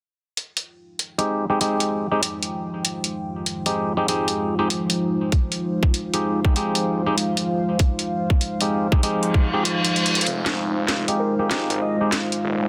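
A drum and bass kit opens the excerpt at 0.4 seconds, its cracking snare and metallic hats sitting up front in a small room, setting a gritty, funky glitch hop groove at 97 BPM in F minor with a swung 16th feel over an Fm9 chord. A clean, stringy clav soon adds percussive stabs through a combo amp, its low-pass filter sweeping while delay and sidechain pumping shape it, and a deep, moody analog pad fades in with chorus and phaser, joined by a warbling, nostalgic lo-fi pad in the background. A tight, layered electronic kick drives the beat from 5.3 seconds, and a reverse cymbal and drum fill lead into a build-up at 10.3 seconds. There a thick, swirling detuned saw bass arrives, bright with phaser and tube saturation, and an edgy, tearing sync lead with chorus, vibrato and delay briefly carries a melody in the background. A moderate plate reverb and a dense, heavily limited master hold the layers together.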